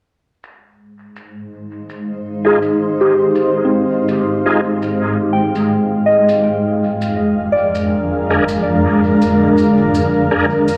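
Ambient dub at 82 BPM in F dorian, meditative and spacious, this excerpt from a longer piece drifts from Fm7 to Bb7/F at 6.3 seconds over a faint, filtered acoustic shaker that enters at 0.4 seconds, steeped in dub echo and a filter sweep. A cloudy, detuned granular pad blooms up front with slow-attack sustained chords, while a lightly overdriven tonewheel organ, shouting through a fast rotary speaker and chorus vibrato, adds echoing stabs from 2.4 seconds. A soft, pure FM bell spins mellow arpeggios through phaser, chorus and its own filter sweep, all bathed in a wet spring reverb and small room ambience.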